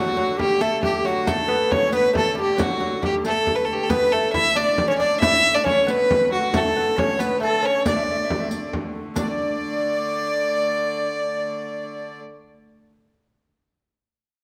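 A steady 6/8 pulse at 91 beats per minute, counted in dotted quarters, drives this festive, ancient-sounding medieval dance in D major, an excerpt cut from a longer piece. Up front, a single bowed fiddle carries the melody with a smooth, even tone and light vibrato, while a breathy bass recorder sits in the background, its tongued notes showing a woody chiff and lifted highs. A fingerpicked lute adds a delicate second line on double gut strings, some doubled at the octave, over the nasal, earthy drone of a wheel-bowed, keyed hurdy-gurdy. A frame drum struck with hard hands and a very quiet riq with bright jingles keep time until 9.4 s, just after the music moves into a new section at 9.2 s. The whole ensemble sits in a wet recital hall reverb with a 1.6-second decay.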